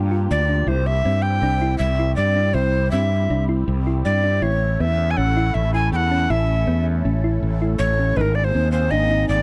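A growly, punchy fretless electric bass sits up front in this driving, intricate progressive instrumental in 5/4, cut from a longer piece. A breathy tenor recorder with a woody chiff and an unsteady straight tone carries the melody from 0.3 s, while a round, tine-like synth pluck plays mellow arpeggios in the background. A swirling, detuned sawtooth pad with phaser and chorus holds sustained chords moving from Gm7 through C and A to Abadd9, all within a dry, close 1970s-style studio sound.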